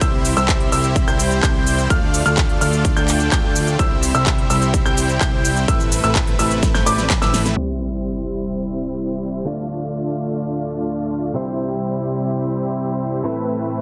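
A dense, compressed supersaw riff sits up front through this festival progressive house excerpt, its huge, detuned unison sound pumping against the beat under a low-pass filter and digital delay. A punchy, tape-tinged electronic kick drives the opening section alongside a big-room kit with a huge snare, crisp hats, handclaps and cabasa, while a fat, saturated analog bass and a dark, intimate baby grand piano playing arpeggios, its action noise audible, fill out the first 7.5 seconds. A rich, earthy chamber string section holds sustained chords far in the background throughout, carrying vintage 12-bit sampler grit. After a drum fill and a band accent, an impact lands at 7.6 seconds with an electronic sub drop, and a clean, direct-recorded electric guitar takes up picked accompaniment with delay as a filter sweep moves over the strings. The mood is triumphant and anthemic, cycling through C, Dm and Amadd9 in a straight 4/4 feel with light reverb.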